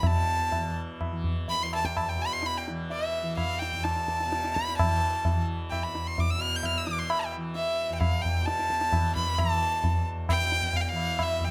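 Hindustani classical music in a five-beat cycle, solemn and meditative, heard in a brief passage cut from a longer performance that gradually speeds up over its 11.5 seconds. A single bowed violin carries the melody up front, its tone bright and intense with vibrato and an airy quality to the bow, moving within a high register. Beneath it, a tanpura sustains a buzzing, shimmering drone, softly plucked and set lower in the mix. High-tuned tabla supplies the percussion with a short, dry ring, sitting level with the violin. Close, detailed microphones capture the players within a moderate recital-hall reverb that lends the performance a sense of space.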